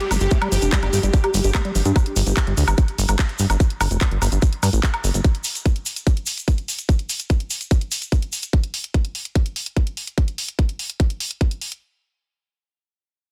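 This driving psychedelic trance excerpt at 146 BPM opens with a bright, pulsing gated chord texture on G4, a squelchy acid bass riff with a filter sweep in the background, a very quiet downlifter and a layered garage kit of handclaps, hi-hat and woodblock; the texture, acid riff and downlifter fall away at 2.0 seconds, while a punchy, funky plucky analog bass runs until 5.2 seconds, a grainy vintage egg shaker and a tight, up-front electronic kick carry on with the kit, and the whole sits in a dense, heavily limited, dry mix.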